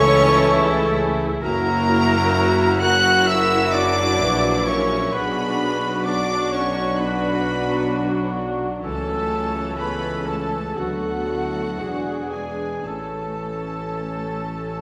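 A slow, rubato 4/4 pulse carries this tender, warm classical passage, cut from a longer piece, where a rich, focused violin section sings the melody with vibrato over a very quiet second violin line, a mellow, hollow flute, and distant oboe and vintage-toned clarinet in the background. A smooth viola section supplies accompaniment while a mellow French horn section and a present trombone section hold sustained chords, and a soft-attack trumpet section adds stabs. The low end rests on an intense, distant double bass section, an even cello section and a tuba, all bathed in a wet scoring-stage reverb as the harmony moves from A/C# through F#7 and Bm to settle on A at 12.9 seconds.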